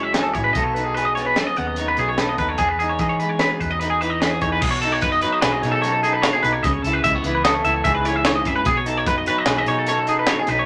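Math rock meets midwest emo in this intricate, bright fragment cut from a longer piece, moving at 148 BPM in a straight 5/4. A twelve-string electric guitar carries the arpeggios up front, its tone clean, twangy and compressed, while a second electric guitar through a small old amp supplies picked accompaniment with a lo-fi, slightly broken-up edge. Underneath, a hollow-body short-scale fingered bass sits lower in the mix with a dark, round, amped sound. The crisp fusion drum kit enters at 0.1 s and stays forward, pairing a high-tuned snare and punchy kick with bright cymbals in a pumping small room, the whole kit saturated and gritty. Harmony opens on F#m9 and moves through B7 and Emaj7 before shifting at 4.6 s to a passage built on B13 and C#m7, all set in a wet studio ambience.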